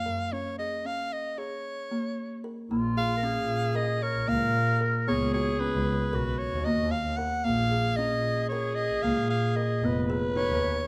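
Contemporary chamber music in a restless yet hopeful 9/8, moving at 227 eighth-note beats per minute, with a breathy, whispered soprano saxophone carrying the melody up front over plucked, woody kalimba arpeggios and a smooth, bowed double bass with vibrato. After a break from 0.3 to 2.7 seconds, a distant, growling clarinet with subtone and scooped notes enters on a raspy, jazz-style second line, as the harmony passes from Bbm through Db7sus4 and Cbmaj7 to Fm7b5. Close, detailed microphones sit in a moderate recital hall reverb, and this excerpt is cut from a longer piece.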